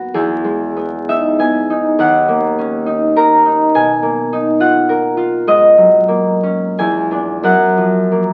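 A ringing, fingerpicked concert harp sits up front in this serene, peaceful classical solo, an excerpt cut from a longer piece, drifting in rubato 3/4 between 81 and 106 BPM through lush chords such as Emaj7, Bmaj7#11 and G#9sus4 before settling on F#maj7, all heard through moderate studio reverb and the crackle of a very old 78 rpm record.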